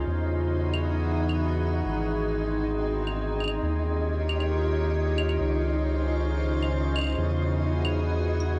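An icy, crystalline glass pad with chorus and reverb holds sustained chords up front through this wistful, intricate IDM excerpt at 135 BPM, moving from Emaj7 through Ab, Eb7 and Dbmaj7, over a round, deep analog bass, a flickering granular texture in the background, and gritty, pitched-up sampler claves entering at 0.7 seconds, all captured as a home cassette recording with light reverb.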